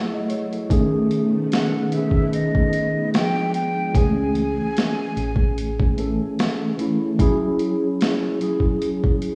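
Mellow and nostalgic, this lo-fi hip hop excerpt in E major moves at 74 BPM with a light swing. It opens on an up-front tine electric piano, softened by cassette tape and low-pass filtering, over a lush, sawtooth-edged string machine that sits in the background until 3.9 seconds. A gritty boom bap kit with a thumpy kick and high-tuned snare enters at 0.3 seconds, a breathy, vibrato-rich jazz flute carries the melody through tape echo from 1.5 seconds, and a round, dark fingered dub bass joins briefly, all set in a lush hall reverb with a rough home-demo feel.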